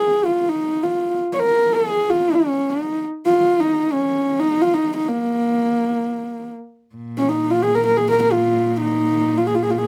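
Mongolian folk in the traditional style, this windswept, vast passage is cut from a longer piece and moves at 130 BPM in a straight 4/4 in Bb yu mode. A single dark horsehead fiddle carries the melody throughout, its husky, nasal, boxy tone heard up front and intimate, with light vibrato, a soft attack, portamento and an airy bow across a range from Bb3 to Db5. At 7.0 seconds a rich cello enters beneath it on a smooth, even Bb2 drone with vibrato, all captured by close, detailed microphones in a dry space.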